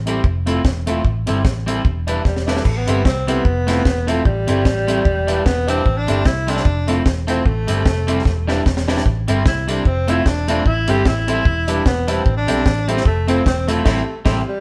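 A dark, round picked electric bass opens this driving, energetic ska excerpt in A minor at 150 BPM, with a gentle swing on the eighths. Almost at once it is joined by a deep reggae drum kit sitting up front, with a dry, high-tuned snare, tight kick, hi-hat and crash, alongside a twangy electric guitar at the edge of break-up and a mellow, woody upright piano playing short stabs. The harmony cycles through Fmaj7, Am7 and Em7 throughout. During a drum fill, a breathy tenor saxophone enters at 2.3 seconds with the melody, its soft attack, scooped notes, vibrato and whispered, intimate tone giving a smooth pop-style solo voice. A second drum fill arrives around 8.3 seconds, and the band hits a final accent at 13.9 seconds. The group sounds as if it is playing live in one room, wrapped in moderate studio reverb.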